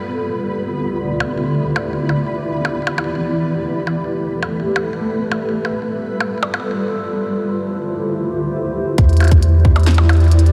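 A straight 4/4 pulse of glitchy drums, with clicky hats, percussion blips and a tiny snare echoing through delay, enters at 1.2 seconds beneath a cloudy, wave-folded granular pad that holds sustained chords through a filter sweep, while a flickering, grainy texture with chorus and sidechain pumping hovers above until 7.2 seconds. At 9.0 seconds a tight, up-front electronic kick and a round, deep analog bass arrive to anchor the final stretch. This melancholic, eerie IDM cut from a longer piece sits in a dreamy mix soaked in a huge ambient reverb.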